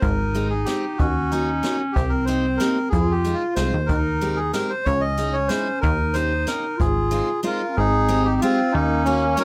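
A reedy, airy bandoneon sits up front and carries the melody of this nostalgic, whirling musette waltz in Ab major, moving briskly at 186 BPM in a straight 3/4. Beneath it, a dark, distant clarinet in a classical style adds a roomy second line, while a punchy, plucky analog bass with a fast attack, decaying sawtooth tone and ring-modulated edge anchors the low end just as prominently. A bright picked steel-string acoustic guitar with fresh strings joins at 0.3 seconds, supplying accompaniment with an auditorium sheen. A jazz kit played with brushes, a high-tuned snare and a boomy kick keeps a natural studio-room pulse until 7.2 seconds, and a short break follows before the opening section returns at 7.8 seconds. The harmony moves through jazzy seventh chords such as Abmaj7, Ebm7 and Fm7, and the close, detailed sound with light reverb suggests a fragment cut from a longer piece.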